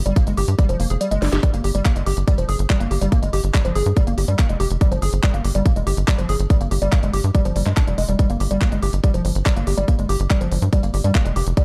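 A woody, wave-folded pluck riff and a tight sequencer bass open this intense, psychedelic trance fragment at 142 BPM in G phrygian, with the harmony sitting on G5. The pluck has a warbling, vintage character with a short, percussive decay, thickened by chorus and delay and pumping against the sidechain. Beneath it, the nasal sawtooth-and-square bass drives hard with a fast, punchy attack, sitting up front in the mix. A garage kit of cracking snare, crisp hi-hats and handclaps enters at 0.1 seconds, followed at 0.2 seconds by an electronic kick, layered and tape-warm and re-recorded in a large room. The kick drops out from 1.0 to 1.4 seconds while a drum fill lands at 1.2, then the groove runs steadily in straight 4/4. The production is dark and dry, with little reverb and audible lossy compression artefacts.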